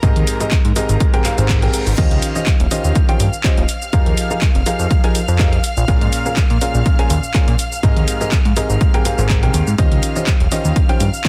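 Bittersweet and energetic, this piano house excerpt moves at 123 BPM in 4/4 with a light swing on the sixteenths, built on a bright, woody upright piano riff with a slightly detuned, worn character and delay, set over a fat, detuned sawtooth bass and a lush bowed violin section holding sustained chords in the background, all three pumping against the sidechain. An overdriven, layered electronic kick sits up front while a tape-warm analog drum machine supplies crash cymbal, handclaps, hi-hat and shaker, and a reverse cymbal rises faintly between 1.5 and 2.0 seconds. The harmony cycles through Abmaj9, Eb13, Fm11 and Bbm7 in a dry, dense, heavily limited modern mix.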